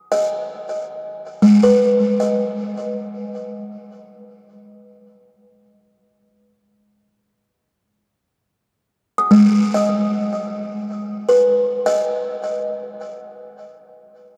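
A buzzing, woody kalimba plays alone and up front in free time across the full 14.4 seconds of this serene, peaceful ambient passage cut from a longer piece, its soft fingertip plucks ranging from G#3 to D#6 with a hollow-box tone, touched with delay and bathed in a vast, echoing cathedral reverb with a 5.0-second tail.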